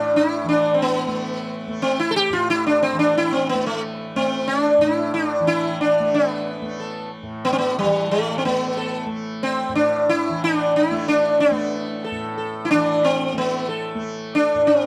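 Longing and meditative, this Indian classical passage, taken from a longer performance, sets an up-front, plectrum-plucked sitar melody with buzzing tone and shimmering sympathetic strings over a softly plucked, warm tanpura drone that sits much lower in the mix. Close, detailed microphones capture every nuance of the two acoustic instruments, framed by light reverb.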